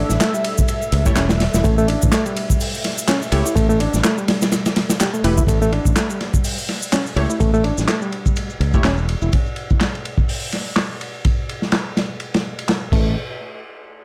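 A swung breakbeat groove at 125 BPM in 4/4 drives this funky, swaggering clip, cut from a longer piece and built on a single A7 chord. A crunchy acoustic breakbeat kit sits up front with a punchy kick, medium-tuned snare, gritty saturation and dark, rolled-off cymbals, layered with a tape-warm house kit of handclaps, ride and shaker that carries low-pass filtering and sounds re-recorded in a large room. A growly, bright fingered electric bass and a barky, reedy electric piano riff with fast tremolo, light overdrive and tape echo both cut out at 9.3 seconds before a brief return near the end. In the background, a deep, moody analog pad with chorus and sidechain pumping holds sustained chords through the opening drop until 5.5 seconds, while a bold, detuned orchestra-hit-like synth stab with built-in reverb and tape echo punctuates from 1.1 seconds. From 5.5 seconds a filter sweep moves over the drums, and the clip closes on a moment with the chord dropping out, all set in audible studio ambience.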